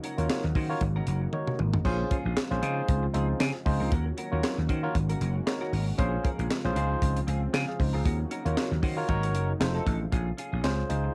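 Tight, dry funk drums with bright cymbals, handclaps, a high-tuned snare and a fill at 1.3 s drive this slick, danceable early-eighties boogie funk at 116 BPM in Bb minor with swung 16ths, joined at 0.2 s by a growly, punchy slap bass and a barky, lightly overdriven tine electric piano up front, while a clean, compressed electric guitar riff and a smooth, detuned sawtooth pad with chorus in the background fill out a close, home-recorded cassette sound that moves from Ebm7 through Ab9sus4 and F7 to land on Bbm7 at 10.1 s.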